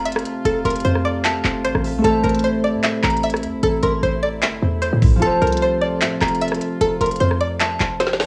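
A twangy, string-like resonator pluck carries the melody up front through chorus, phaser, tape echo and plate reverb in this brooding, menacing half-time trap excerpt at 151 BPM, over an electronic kit of knocking kick, woody snare, crisp hats, rim clicks and handclaps, a punchy, tight 808-style bass, soft-attack brass ensemble chords with light vibrato, and a delicate, tinkling FM tine bell line up high, while a ringing, fingerpicked Celtic harp joins at 2.0 s as the chords move from F to Am and back to F, with a home-cassette feel in a modest studio room and a drum fill at 8.0 s.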